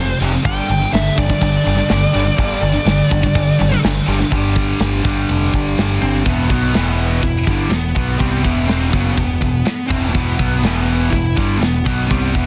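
A growling, overdriven electric bass sits up front in this aggressive, dark heavy metal excerpt. It plays beneath a riff from a pair of distorted, picked rhythm guitars, one compressed and one high-gain, while a dark high-gain lead guitar carries the melody through tape echo and a silky, detuned analog string pad hovers very quietly with chorus and vibrato until 4.3 s. A tight metal kit with bright cymbals and a soft-clipped kick joins at 0.2 s, the music settles onto E minor at 6.3 s, and the studio reverb and dense, heavily limited master keep it punishing.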